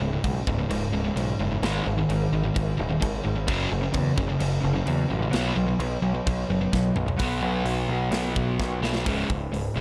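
A growling, punchy electric bass sits up front in this aggressive, relentless heavy metal excerpt at 129 BPM, its bright overdriven tone anchoring the low end beneath two sludgy distorted guitars that carry the riff, one dark and one warm, both overdriven and set in the background. A tight, polished drum kit with bright cymbals and an airy big-room sound drives a half-time feel through the opening 7.2 seconds, with fills at 6.7 and 8.6 seconds. Power chords move from C#5 through G#5, F#5 and B5 before returning to C#5 at 9.1 seconds, all under light reverb.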